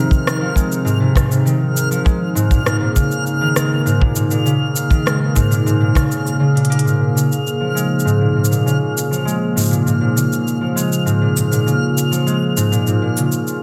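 A warbling, lo-fi tape-like pad holding sustained chords, bright fingerpicked concert harp arpeggios through a digital delay, and a reversed, granular swelling texture open this intimate, autumnal folktronica excerpt. At 0.1 seconds they are joined by a dry, tight kick that stops at 6.1 seconds and by an overdriven organic electronic drum kit of smooth hi-hat, rim click and shaker. A drum fill arrives at 6.6 seconds, and the whole is set inside a moderate concert hall reverb.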